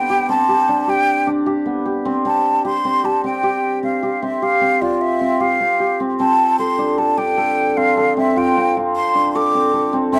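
Set in an uneven five-beat metre with a straight feel, this short cut from a longer contemporary instrumental piece feels shimmering and restless. A hammered dulcimer carries arpeggios in its middle register from the first second to the last, its acoustic tone ringing and warm with shimmer. Above it, a breathy jazz flute sings the melody in a higher register, with a soft attack, gentle vibrato, lifted highs and an expressive phrasing that keeps it close and up front alongside the dulcimer. The harmony moves from Cmaj7sus2 to Fsus2/C at 2.3 seconds and settles on Dm7 at 6.2 seconds. A modest small-room reverb and a dark, warm production give the pair an intimate, rounded sound.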